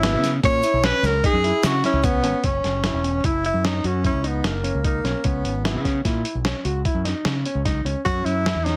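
A breathy, vibrato-laden tenor saxophone opens this driving, brooding progressive excerpt with a scooped jazz solo over a deep-toned grand piano's arpeggios, a growling, overdriven fingered bass and a gritty, pitched-down boom bap kit with a thumpy kick, all in 7/4 at 149 BPM, as a grainy egg shaker ticks faintly in the background from 0.2 to 2.1 seconds and the C#m7 and F#7 chords alternate under light reverb and a heavily compressed, radio-like sheen.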